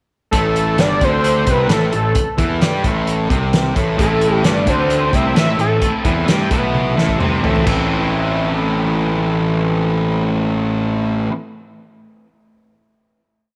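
A cool, restless indie rock piece in A minor at 131 BPM opens at 0.3 seconds with a fat, detuned sawtooth lead stating hook phrases through chorus and tape echo, over an up-front fuzz guitar octave riff, a growly overdriven picked bass playing root and fifth while doubling that riff, and a loose acoustic kit with punchy kick, dark cymbals and a pumping room sound. From 4.0 seconds a raw garage guitar adds ringing overdriven chords in the background, and after a drum fill the drums stop at 7.8 seconds, leaving the guitars and bass to hold a final A minor chord to the end in light studio reverb.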